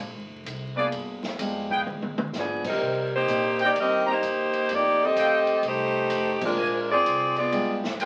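A swung 4/4 pulse at 127 BPM opens on pizzicato upright bass with a woody tone, joined at 0.5 seconds by a distant, roomy big-band drum kit with a boomy kick, a medium-tuned snare, hi-hat, ride, crash and toms, which plays a brief fill just before the band accent at 2.6 seconds, with a second accent landing at 6.3 seconds. Grand piano comping and a clear, tight trumpet section firing vintage stabs with light vibrato arrive together at 0.8 seconds, before an up-front saxophone section takes the melody with a warm vibrato at 2.4 seconds over Bb9, G7b9, Cm7 and F9 changes in Bb mixolydian. This energetic, joyful snippet of big band swing, cut from a longer piece, sits in a wet small room and carries the crackle of a very old 78 rpm record.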